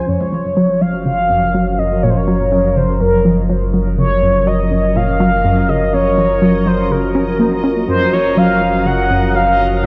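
A straight, steady 4/4 pulse drives this luminous, cosmic stretch of sequencer-driven space music, cut from a longer piece and resting on a single Gbmaj7 chord. A mellow, horn-like synth lead sits up front with vibrato and tape echo, carried over a bright, evolving resonant pad and a deep, round analog bass. A warm analog pluck riff with chorus and tape echo enters at 0.1 s, while a bubbling, stepped-filter texture fades in far in the background, all bathed in a lush plate reverb.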